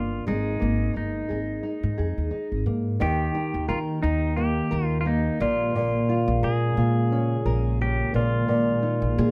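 Close, detailed microphones and very little reverb give this short acoustic pop excerpt an intimate, dry sound, carefree and sunny at 88 BPM in Eb major with a light sixteenth-note swing. A classical, thumb-plucked nylon-string guitar and a woody pizzicato upright bass sit up front, while a bright, clean pedal steel guitar adds a softer second line with fingerpicked slide phrases and volume swells. At 3.7 seconds a very quiet, glassy FM pad enters with sustained, warbling chords, its ensemble chorus and built-in reverb lending an ethereal vintage sheen as the harmony moves from Absus2 through Eb and Bbm7 to Bb7sus4.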